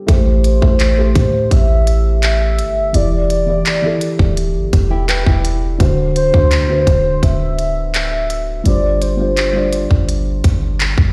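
A straight 4/4 groove at 84 BPM drives this late-night, sensual contemporary R&B excerpt in A minor, with an electronic kit of tight kick, crisp hats and handclaps sitting up front beside a deep, boomy 808-style sine bass, while a felt-muted upright piano adds soft, boxy chords through Am7, Em7, D7 and G7sus4. A round, horn-like synth lead with chorus, vibrato and digital delay carries the melody in a narrow upper range, and a dark, thumb-plucked flamenco guitar slips in briefly with delayed arpeggios from 4.9 to 5.8 seconds. The parts carry little reverb of their own, yet the whole sounds played back through a big sound system in a bare stone room.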